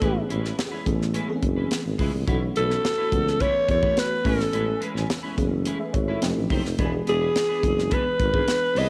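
Breezy and urban, this short clip of polished 1980s jazz-funk pop moves at 106 BPM in a straight 4/4, with a breathy, raspy alto saxophone carrying the melody up front through cassette tape and analog delay. Beneath it, a lush, dreamy FM electric piano with a soft pad layer warbles through ensemble chorus, a dark, clean electric guitar picks a riff through analog chorus, and a mellow tuba with light vibrato supplies the bass. A tight, dry funk drum kit with a high-tuned snare sits up front, and the whole 8.9 seconds moves from Amaj9 and B9sus4 to F9 and E7 in a lightly reverberant home cassette sound.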